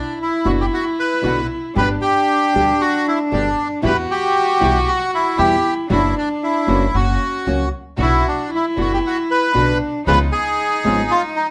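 Tango cut from a longer piece, passionate and sultry with a rubato feel, where a reedy, dark bandoneon carries the melody up front over a bowed cello second line with light vibrato and a biting, earthy tone, fingerpicked nylon-string guitar accompaniment, soft-attack sul tasto string stabs floating in the background, and woody, thumpy pizzicato upright bass, all set in a moderate club reverb as the harmony moves from Bm through G and Em to a closing C#7.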